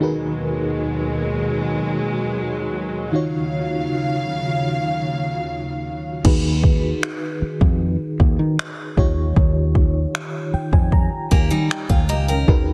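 A dark FM electric piano with tremolo and a close, intimate bowed string section, played sul tasto with vibrato, open this moody, sensual contemporary R&B passage in Eb minor at 77 BPM, drifting from Abm9/Eb to Ebm9. At 6.2 seconds the strings stop as an up-front electronic drum kit arrives, with crash cymbal, finger snaps, a soft kick and muted hi-hats, its vintage 12-bit sampler grit and soft-clipped snare set in a large room, joined by a punchy, foam-muted fingered bass over Ebmadd11 and Eb7. The electric piano adds a fill from 10.1 seconds, a bright dreadnought steel-string guitar picks arpeggios from 11.3 seconds, and the whole short cut from a longer piece has a dry, dense, heavily limited modern master with lossy compression artefacts.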